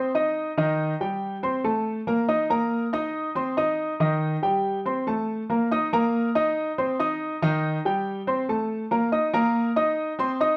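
The recording sits in a wet studio reverb with a short half-second tail, and the room is heard from further back, while the grand piano itself comes across as clear, present and up front. This is a sunny, relaxed Latin piece at 140 BPM in a straight 4/4, cut from a longer performance. The solo piano plays alone for the full 10.6 seconds, ranging from Eb3 up to Eb6. Its harmony cycles through Cm, Eb, Am and Bbsus4, and the same passage is heard twice, with the second pass beginning at 5.7 seconds. The clip closes as the progression returns to Cm at 10.0 seconds.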